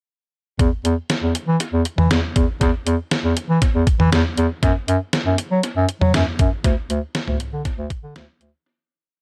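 An echo-heavy mix with light reverb and a digital ambience frames this driving and cool synth-pop piece at 119 BPM in straight 4/4, tuned to A4 = 442 Hz. From 0.6 seconds, a detuned 8-bit drum machine with tape echo sits up front, its sampler-style beat built from a thumpy kick, medium-tuned snare, hi-hat and syncopated toms. A mellow bass clarinet with a soft attack and smooth top carries the bass line like a sequenced synth bass from D2 to F#3, until the whole verse fades out from 6.6 seconds.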